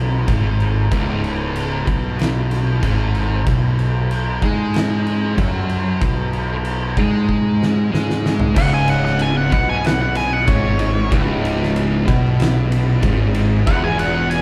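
Two thick, fuzz-drenched guitars sitting in the background and a growly, overdriven fingered bass open this ominous, brooding stoner and doom metal passage in C# minor at 94 BPM, with an oversized, low-tuned drum kit arriving at 0.3 seconds with a punchy kick, fat snare, dark cymbals and a gritty, pumping room sound up front. After a drum fill from 7.3 seconds, a dark octave-fuzz lead guitar takes a solo at 8.6 seconds, its distortion touched with slapback echo, while a bright, double-tracked overdriven guitar joins the riffing underneath. The band plays live together in a large studio with moderate reverb, and the section is cut from a longer piece.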